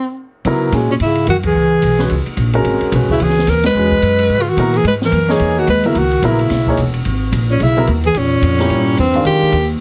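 Modal jazz at a brisk 218 BPM swing in C# Dorian, cool and spiritual in mood, cut from a longer piece, where a clear, close-miked tenor saxophone carries the melody with vibrato and a soft attack, opening alone before the woody, thumpy pizzicato upright bass and an open acoustic drum kit with dark cymbals, a high-tuned snare and a boomy kick join at 0.4 seconds, alongside a concert grand piano with deep bass and a breathy, subtone bass clarinet playing a mellow second line, as the band hits accents at 1.4 and 3.6 seconds over C#m9 harmony that turns to C7b9 and Fm9, all set in light reverb with a heavily compressed, radio-like sound.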